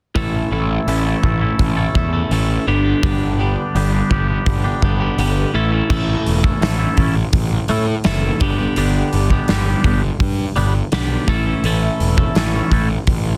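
Quiet-loud alternative rock in a straight 4/4, this bittersweet, cathartic fragment of a longer piece shifts between two sections, the second arriving at 5.9 seconds, over a chord movement of A and G. A clean, twangy electric guitar plays arpeggios through a phaser, while a round, fuzzy picked electric bass adds overdriven weight and a big acoustic drum kit, dark and punchy with a medium-tuned snare, drives the crash, hi-hat, kick and snare. All three parts sit up front in a dense, heavily limited modern master with little reverb.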